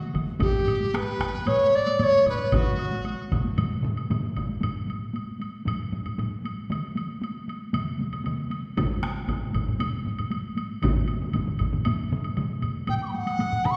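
Driving and ceremonial, this Japanese traditional taiko drum ensemble passage moves at 116 BPM in a straight 4/4 on F# miyako bushi, speeding up throughout its short span cut from a longer piece. A mellow large dizi carries the melody between F#4 and D6 with a pure, buzzing bamboo tone and a crisp chiff, playing until 3.3 seconds and returning at 12.9 seconds, while four taiko ensemble parts, two struck with heavy sticks and two with hard sticks, join a close, woody woodblock from the opening moments. A reverberant church or concert hall space with a 1.8-second decay surrounds the performance.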